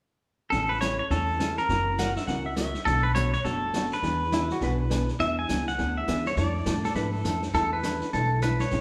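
A wet, roomy studio sound surrounds this short western swing and country excerpt, with the band heard playing live together in one large room. The mood is down-home and playful, carried by a brisk swung feel in four. Up front, a clean, compressed pedal steel guitar sings the melody with fingerpicks, slide and volume swells, and a second pedal steel adds its own line from 2.0 s to 7.4 s. A dark, hollow-body electric jazz guitar picks the accompaniment, while a woody, thumpy upright bass on gut strings plays pizzicato underneath. A distant vintage kit keeps time on brushed snare and hi-hat with a rolled-off top, as the chords move from Amaj7 through F#7, Bm7 and E7 toward Dmadd9/F and E7sus4.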